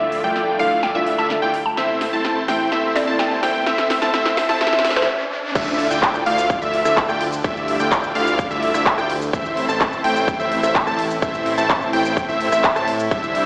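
A straight 4/4 pulse at 127 BPM drives this anthemic, powerful festival progressive house passage in D minor, cut from a longer piece. The build-up pairs a drum fill on the overdriven big-room kit, with its punchy snare and crisp hats, against a dark, mellow baby grand piano in the background, a woody, warbling mallet-like synth pluck carrying the melody, and a very quiet riser. A short stop at 5.1 seconds gives way to the drop at 5.6 seconds, where a layered electronic kick arrives, and by then the piano and pluck have fallen away. Throughout, a huge, detuned supersaw riff sits up front, filtered and pumping, while a catchy, bright unison lead spins arpeggios and a fat analog bass anchors the low end. A lush, very quiet pad holds sustained chords moving between Dmadd9 and Am. The mix is bathed in stone-room reverb with a thin, AM-radio coloring, as if played on a big sound system in a bare room.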